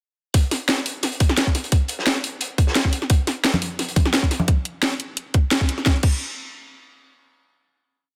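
Lush and warm, this short drum and bass piece is a drop built entirely on drums, with an overdriven, up-front electronic kick in a tight two-step pattern alongside a layered garage kit whose cracking snare, closed hats and crash roll forward. Tucked in the background, a dark, gritty breakbeat kit with a rolled-off top plays a looped, edited break until 4.4 seconds, while ringing, close-miked congas add light hand-drum colour from 3.5 seconds. A band accent lands at 5.5 seconds before a final hit rings out in light reverb and studio ambience.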